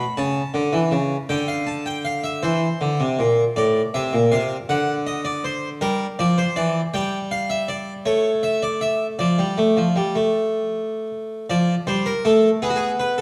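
A solo harpsichord, airy and plucked with the full voice of two sets of strings in the French style, sits up front in this brief classical passage cut from a longer baroque-style two-part invention. The mood is contemplative and solemn, moving at a slow 53 beats per minute in a straight 6/8. The piece begins in G minor and turns toward D minor from 6.9 seconds, with harmonies passing through chords such as C7, D7 and Gm along the way. The instrument spans from A2 up to Cb6 across its short three-part course, closing on a B5 chord at 12.6 seconds. A moderate recital-hall reverb surrounds the playing, and the production leans dark and warm.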